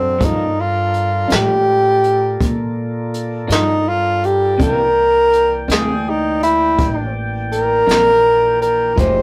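Slow blues in 12/8 at 55 BPM, gritty and rollicking, cut from a longer piece. A breathy, up-front tenor saxophone solos throughout, mellow and subtoned, with scooped notes and light vibrato over Gm7 moving to C9 at 4.6 seconds, while a growly, woody upright bass is plucked beneath it and a clean tonewheel organ holds sustained chords through a slow rotary speaker. From 0.2 seconds a slightly broken-up electric guitar through a small old amp adds picked, compressed accompaniment with harmonic tremolo, and a punchy brushed drum kit sits up front, all in a rough rehearsal-room recording with light reverb.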